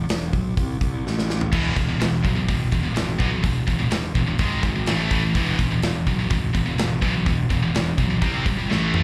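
A growly, fuzz-soaked fingered electric bass opens this dark, heavy metal excerpt at 126 BPM in straight 4/4, and a big acoustic rock kit joins at 0.1 s with a punchy kick and a medium-tuned snare up front, playing a drum fill just before both guitars enter at 1.5 s. One high-gain guitar plays a bright, picked riff up front, while a scooped high-gain guitar with slapback echo sits in the background, the harmony moving from E through G#5 and A5 to C5 before a closing drum fill at 8.7 s. The whole thing sounds like a live club gig heard through the venue's PA.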